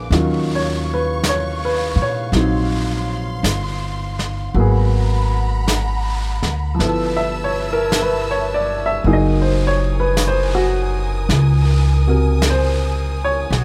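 This close, detailed recording sits in light reverb, with a woody upright piano and a thumpy pizzicato upright bass both up front. It is a tender, romantic jazz ballad at a slow 54 BPM in 4/4, swung on the eighths, heard as a short cut from a longer piece. The piano plays accompaniment with a smooth, vintage tone and short sustain, while the bass carries the low end from Gb1 to Bb2. Behind them, a distant, lush string section holds bowed chords high in the register, expressive with vibrato and portamento. A vintage brush kit enters at 0.1 seconds, mid-forward with a rolled-off top, brushing the snare and touching the hi-hat. The harmony drifts through Ebm9, Abm9 and G13 before settling on Gb69 at 9.0 seconds.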